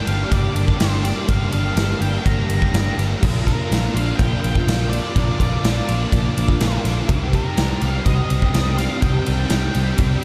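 A biting overdriven guitar riff and an octave-fuzz lead guitar melody open this shoegaze and dream pop excerpt together at 0.0 s, with a dreamy, melancholic mood at 124 BPM in a straight 4/4. The lead sits dark and fuzzed between Bb4 and Bb5, set low in the mix and trailed by a diffuse ambient delay, while the double-tracked, picked riff guitar carries an analog chorus and a warm bite across G2 to G4. A vintage muted picked bass, round and foam-muted, holds the low end from G1 to C2, and a big acoustic rock kit with a punchy kick, medium-tuned snare, bright crash and ride cymbals sits up front in a roomy space. The harmony moves from Gm7 to Bb at 3.2 seconds and on to Cm at 7.1 seconds. A lush hall reverb of 1.5 seconds soaks the mix, giving the whole passage a hazy, washed-out sheen as it cuts off from a longer piece.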